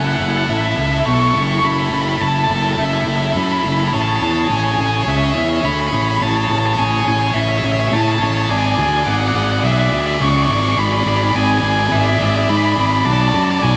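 A lush hall reverb with a 3.3-second tail surrounds this post-rock clip cut from a longer piece, giving it a big arena sound laced with a hint of small-room ambience. At 105 BPM in a straight 4/4 in A major, tuned to A4 = 441 Hz, the music feels hopeful and soaring, building up across its full 13.8 seconds. A raw, lo-fi garage guitar carries the melody in its upper register, its overdriven tone colored by spring reverb and slapback echo. Beneath it, a double-tracked distorted electric guitar sits up front with a bright, picked riff and its own slapback echo, while a fuzzy fingered bass, direct and amped, anchors the low end from F#1 to A2. The harmony moves from F#m7 to Amaj7, then to E7/G# at 8.5 seconds and Bm7 near the close.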